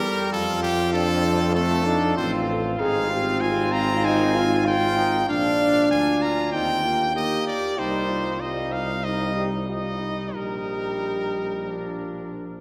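Noble and triumphant, this short passage for brass quintet unfolds in a flexible, rubato classical style over 4/4. A clear trumpet carries the melody up front with light vibrato and a soft attack. A distant, roomy flugelhorn with a warm tone and gentle vibrato sings a second line in the background. The dark French horn and the smooth-topped trombone fill out the accompaniment, while a mellow tuba, placed up front with its own vibrato, anchors the bass. All five instruments play together for the full 12.6 seconds, their harmony moving from F through Fm7/Ab and Bb to Eb, Cm and Eb/Bb before settling on Bb, all bathed in the long, wet reverb of a church or concert hall.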